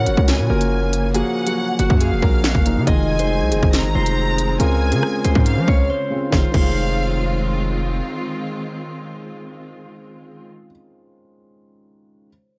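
Cold and menacing, this half-time drill cut pairs orchestral and acoustic textures with a hard electronic low end. A distorted, saturated 808-style bass with a noise layer and fast attack sits up front beside a drill kit of hard-clipped kick, sharp snare, crisp hats, rim clicks and crash cymbal, which drops out at 6.7 seconds. Over them a fingerpicked Celtic harp carries the ringing melody through a low-pass filter, while a smooth, close studio violin section adds a lush, delayed second line above it. A soft, thick-felt upright piano, also filtered, plays mellow, intimate accompaniment. Further back, a dark, woody symphonic string section holds distant bowed chords, moving from Gbmaj7 through Fm7 and Dbmaj7 before a brief break at 5.9 seconds leads into a second section on Fm7.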